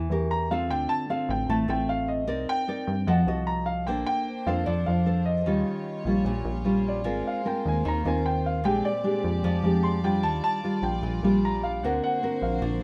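A nylon-string guitar, thumb-plucked in a classical manner, opens this smooth, melancholic bossa nova together with a punchy, sawtooth-edged analog bass whose filtered pluck has a fast attack and a decaying tail. Almost at once, at 0.3 s, a natural-sounding grand piano takes the melody in its upper register, sitting up front alongside the guitar and bass. At 3.9 s a bowed studio string section slips in beneath them, playing sustained chords sul tasto with a soft attack and a pure, floating tone, placed well back in the balance. The straight-feel 4/4 groove moves at 151 BPM through rich, jazz-coloured harmony, from A7b9 and Dm7 through Bbmaj9, Eb9 and Ab69 before settling toward Ebmaj9 and D7b13. A moderate studio reverb lends the whole ensemble a gentle sense of space in this excerpt from a longer piece.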